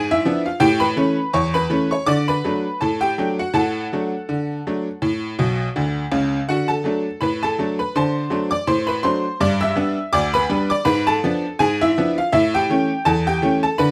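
A tack piano carries this short ragtime piece alone, its bright, metallic, jangly tone sitting up front with a percussive bite and short sustain. The mood is jaunty and playful, set in D major at 82 BPM in 2/4 with a swung sixteenth-note feel. The part ranges from B1 up to E6. The harmony moves from a G#dim7 and A7 opening through D, D7 and G before returning to G#dim7 and A7 near the end. A honky-tonk fill stands out between 5.4 and 6.5 seconds. Light reverb lends the vintage, natural sound a touch of space across this 13.9-second cut from a longer piece.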